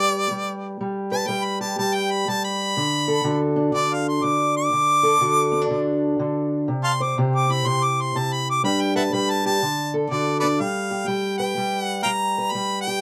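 Acoustic country blues with a soulful, gritty swing, this duo fragment of a longer piece sets a bright harmonica melody over a dark, boxy fingerpicked steel-string parlour guitar, both placed up front. The harmonica takes a jazz-style solo from the opening to 10.6 seconds, coloured with vibrato, tongue slaps and a soft attack, before a short closing section. Close, detailed microphones and light reverb keep the sound intimate.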